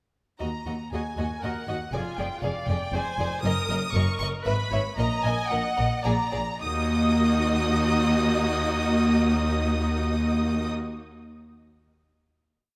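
Set in a reverberant scoring-stage space, this urgent, stormy classical-period movement for symphony orchestra in Eb minor moves at a quick 104-121 BPM in a rubato 3/4, with a clear, intense first violin melody over expressive second violins on repeated notes and sustained chords, a focused viola counter-melody entering at 0.9 s, smooth, distant cellos on repeated bass notes and close double basses doubling the bass line, all with vibrato, before slowing from 2.7 s into a final Ebm chord held from 6.6 s.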